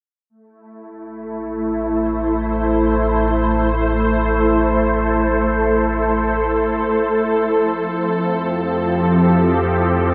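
A bright, morphing wavetable pad opens at 1.0 s with slow-attack sustained chords, its detuned unison voices thickened by ensemble chorus and sitting up front, moving from A minor to F major seventh at 7.4 s. A deep, ominous drone rumbles in underneath at 1.6 s, dark and sustained in the bass. This serene, melancholic ambient piece drifts in free time, tuned to A4 = 441 Hz, and the dreamy mix is soaked in a huge reverb with a 7.8-second decay.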